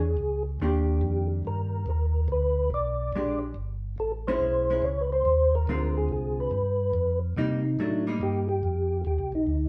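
Smoky and late-night, this short soul jazz organ trio cut swings along at 142 BPM in 4/4, with its eighth notes swung. A soft, flute-like tonewheel organ carries the melody from the start, its percussive second-harmonic attack colored by chorus vibrato and a slow rotary speaker. Underneath, a second tonewheel organ holds down the bass line, round and dark with a touch of key click, also turning through a slow rotary speaker. A clean, compressed hollow-body electric guitar enters at 0.6 seconds with picked accompaniment and drops out at 8.4 seconds, sitting a little lower in level than the two organs. The harmony moves through rich jazz colors such as Ebmaj7, Bb6, Amaj7 and a Dm7b5 to G7 turn that lands on Cm7. The wet studio reverb places the trio further back in the room, lending the sound a soft, dim haze at the top.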